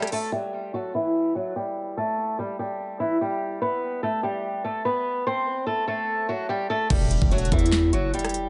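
Melancholic and brooding, this short cut from a longer hip hop and trap piece moves at 146 BPM in a half-time feel in E minor. A picked, swing-style acoustic guitar carries the melody throughout, its boxy tone placed up front and shaped by a low-pass filter and analog delay, with a filter sweep running across it from 0.3 to 6.9 seconds. Underneath, the chords move from Em through Emadd11 and Gadd9 to Am before returning to Em. After a brief opening hit, the overdriven trap drum kit returns at 6.9 seconds with a knocking kick, sharp snare, crisp hats, handclaps, rim clicks and a crash, sounding up front as if re-recorded in a small room. A heavy, aggressive 808-style bass arrives with it, saturated and distorted with a fast attack, a noise layer and a decaying tail, while a very quiet electronic impact lands beneath them. The echo-heavy mix sits in light digital reverb, with its top end kept dark.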